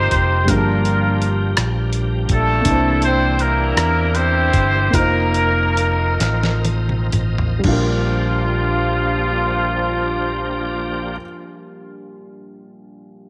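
A clear, up-front horn section sings the melody with vibrato and tape echo from the start of this slow, soulful gospel passage in Bb major and 6/8. Beneath it sit a dark, woody upright piano, a bright tonewheel organ holding sustained chords through overdrive, chorus vibrato and a fast rotary speaker, and a round fingered electric bass. A gritty sampler-style drum kit with a thumpy kick and fat snare enters almost at once, the tempo slows from 2.7 s, and after a drum fill the kit stops at 7.9 s as the chords move from Gm9 through C9 and F7sus4 to Bb6. Horns, organ and bass end at 11.2 s, leaving the piano alone, its long sustain and audible action noise held in light reverb to close this reverent moment.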